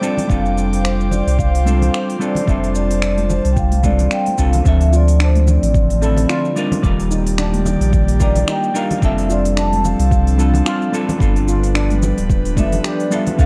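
With a dark, lightly reverberant production, this sunny, blissful sunset chillout fragment in swung 4/4 sets a mellow soft-mallet vibraphone melody with tape echo over clean hollow-body electric guitar accompaniment, a breathy chorused pad, a round, up-front sine sub bass, a deep layered electronic kick, a smooth deep house kit of cabasa, finger snaps and hi-hat, and bright background congas, before a shimmering steel pan adds soft arpeggios from 4.9 s as the chords move from Dm7 through Ebmaj7 and F6 to G7.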